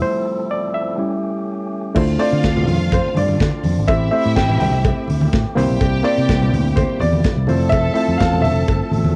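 A straight 4/4 disco groove, driving and danceable, opens this excerpt with a barky, reedy electric piano leading a 2-second break over fat tonewheel organ chords spun through a fast rotary speaker; then at 2.0 seconds punchy fingered bass, a polished drum kit with crash, hi-hat, kick and snare, and a faint metallic cowbell come in beside lush, bowed strings with tape echo, distant low-tuned congas join a moment later, and an intimate grand piano soon carries the melody with audible action noise, all set in light reverb on a home cassette recording.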